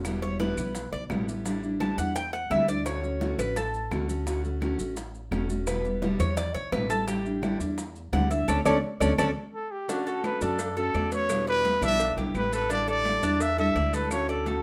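Latin Cuban son in a guajira vein, danceable and warm at 171 BPM in D major, with a metallic, double-strung Cuban tres soloing up front in picked arpeggios over a full-bodied fingerpicked steel-string acoustic guitar and a dark, thumpy pizzicato upright bass on gut strings. In the background sit high-tuned congas with thick skin, round low-tuned bongos and cowbell, and woody close claves, while grainy, mellow maracas sound close. During a band accent from 8.5 to 9.9 seconds, a breathy, whispered trumpet with vibrato and a soft attack enters at 9.5 seconds, intimate and close-miked, carrying the melody over moderate studio reverb.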